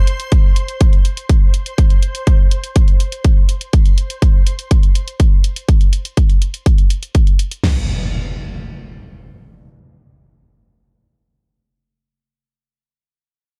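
Progressive house at 123 BPM in an uplifting, euphoric mood, this excerpt from a longer piece opens with a dreamy, reversed, detuned texture swelling in the C5 to C6 range with its own reverb and sidechain pumping until 3.7 seconds, while a layered, up-front big-room dance kit with a punchy kick, huge snare, crash and toms drives alongside a tape-warm electronic hi-hat re-recorded in a small room, before an up-front electronic impact takes over from 7.7 to 11.5 seconds, all in a dark, dry production.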